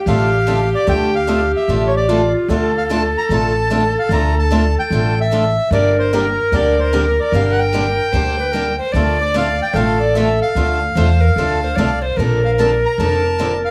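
Fiery and virtuosic, this short cut from a longer acoustic string swing piece in the jazz manouche style drives along at 149 BPM in 4/4 with a swung eighth-note feel in D minor. The reedy, close-miked accordion carries the melody up front, its full tone set in plate reverb, while a breathy alto recorder with a soft attack and vibrato adds a second line treated with tape echo. Two picked acoustic guitars supply the accompaniment: a boxy swing-style guitar with fresh strings and audible finger squeak, and a steel-string guitar with a concert tone sitting in the background. Beneath them, a woody, thumpy pizzicato upright bass on gut strings holds the low end up front in the mix. The harmony moves from Dm to Gm at 5.7 seconds, back to Dm, and settles on Bbmaj7 at 12.2 seconds, all within a small room ambience and moderate studio reverb.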